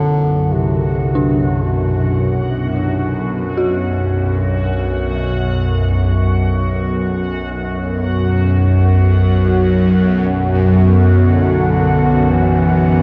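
This dark ambient drone in B minor drifts in free time, cavernous and dark, and is cut from a longer piece. Up front, a bright, tense bowed-like drone carries a string-like sawtooth tone with a noise layer, vibrato and a phaser, sitting deep in its low register beneath everything. A mellow solo bass clarinet plays a smooth, classical-style melody with tape echo, heard from 0.0 to 2.7 seconds and again from 11.2 seconds to the end. In the background, a moody analog pad fades in with sustained chords thickened by chorus and ring modulation, while an eerie, inharmonic FM synth bell plays decaying arpeggios. A bubbling texture of random, resonant filter steps also fades in throughout, all set in a soaking cathedral reverb, with worn cassette tape adding a warbly pitch drift to the whole sound.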